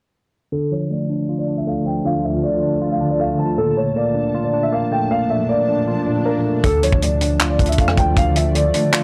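This trap-flavored hip hop excerpt in D minor moves at 157 BPM with a half-time feel, setting a menacing, eerie mood over a Dm to Bbmaj7 progression. A dark, mellow concert grand piano carries the melody in a vintage, short-sustained tone, while a bell-like, barky tine electric piano sits up front with clean accompaniment, both filtered as a sweep runs through the opening until 6.6 seconds. From 1.6 seconds a granular cloud pad adds blurred, detuned, evolving chords bathed in its own reverb, and an electronic swell appears in the background just before the drop. At 6.6 seconds the beat arrives: a dry, tight funk kit with handclaps, hi-hat, kick and rim click, joined by a deep, sine-like 808 bass that hits with a fast attack and decays. The whole piece has a gritty, cassette-tape character in a small room, giving it a lo-fi, slightly worn edge.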